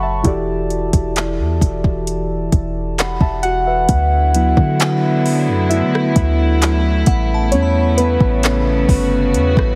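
Tender and romantic, this short contemporary R&B passage moves at an unhurried 66 BPM in a straight 4/4, settled in D major and cut from a longer piece. Muted, felt-like synth keys with a dark, intimate tone and a touch of chorus open the recording alongside a deep, boomy 808-style bass, both sitting up front, while a smooth electronic drum kit of soft kick, metallic hi-hat, handclaps and rim clicks enters at 0.2 seconds with an overdriven edge. The harmony drifts from Em11 to D69 at 3.9 seconds, where the keys take a solo turn and a studio string section arrives with sustained, bowed chords, its reedy gut-string tone and light vibrato shaped by sidechain pumping. A crystalline FM synth bell with a vintage warble glimmers in the background, treated with chorus and tape echo, before the chords move to A9. The whole mix is heavily compressed with a digital ambience that gives it a radio-ready sheen.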